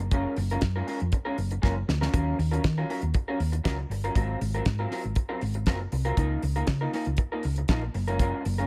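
Opening at once on a dry, tight-kicked 70s drum kit with a fat snare, a round, dark hollow-body bass and a slightly broken-up, lo-fi guitar through analog chorus, this driving, danceable disco excerpt at 119 BPM moves through Gbmaj9, Ebm9, Ab13 and Db69 chords in a small room, with a drum fill at 1.6 seconds.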